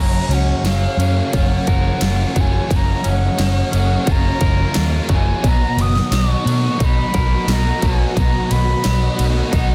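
A straight 4/4 pulse at 88 BPM drives this hazy, dreamy shoegaze and dream pop excerpt in F# major, where a punchy, up-front electronic drum kit with a huge snare, kick and ride enters at 0.3 s beneath a round, dark foam-muted fingered bass, three overdriven guitar riffs (one biting with analog chorus, one crunchy and double-tracked, one in the background with reverse reverb), shimmering sawtooth string-machine violins with ensemble chorus, and an airy, reedy concert flute melody with vibrato and digital delay, all moving from F#maj7 to Bmaj7 in a dense, heavily limited, dry mix.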